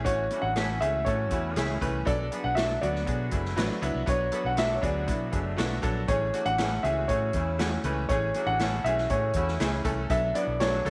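A roomy echo-chamber sound with small-room ambience and a softened top end frames this uptempo, joyful 1960s-style soul excerpt in A major at 120 BPM, moving in a straight 4/4 between Amaj7 and Bm7. An intimate grand piano carries the melody with audible action noise, while a brilliant, worn, slightly detuned upright piano plays the accompaniment and a round, dark fingered electric bass sits beneath. A distant big-band drum kit with a boomy kick and medium-tuned snare enters at 0.1 s, a horn section with light vibrato adds a second line in the background from 0.3 s, and a very quiet, slightly broken-up lo-fi guitar plays stabs from 0.6 s.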